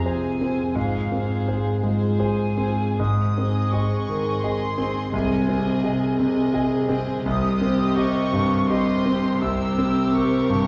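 A clear, up-front concert grand piano with deep bass, long sustain and audible action noise leads the melody in this passionate, lush romantic movement for piano and orchestra, cut from a longer piece and flowing in a rubato 3/4 at 84 BPM, joined throughout by a rich violin section with light vibrato also on the melody in the background, an airy flute section and a floating second violin section on the second line, a dark, very quiet viola section in accompaniment and warm cellos on the bass, the harmony moving from F minor to A-flat major within a wet concert hall reverb heard from further back in the room.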